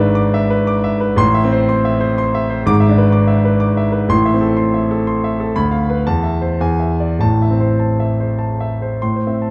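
In triple metre, shaped by free rubato, this romantic character piece for solo piano moves with a brooding, passionate mood. A concert grand plays alone until 9.5 seconds, reaching from a deep bass at G#1 up to D6. The harmony circles between E7 over G# and A minor, then passes through a B diminished chord over D and A minor over E before an E7 resolves to A minor at 7.2 seconds. The piano sits up front with a natural, warm tone, framed by a moderate concert-hall reverb of 2.0 seconds that gives the dark production its depth. Cut from a longer work, the passage holds a single section that closes at 9.0 seconds.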